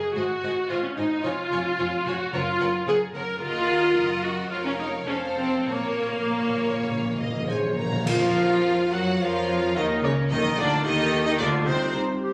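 A dramatic, stormy classical excerpt for symphony orchestra, urgent and pushed along with rubato, opens on lush, vibrato-rich strings: an up-front viola section carries the accompaniment beneath a focused violin melody, a smoother, distant second violin line, portamento-inflected chamber cellos and a smooth-topped double bass section. At 5.7 seconds round, soft-mallet timpani and dark, dry cymbals with concert bass drum play a fill leading to a full-band accent at 8.1 seconds. By then a pure flute, dark background horns, very quiet trombones and distant trumpet stabs have joined, followed at 9.2 seconds by a mellow solo clarinet, all in a moderate scoring-stage reverb with a phone-in-the-room feel.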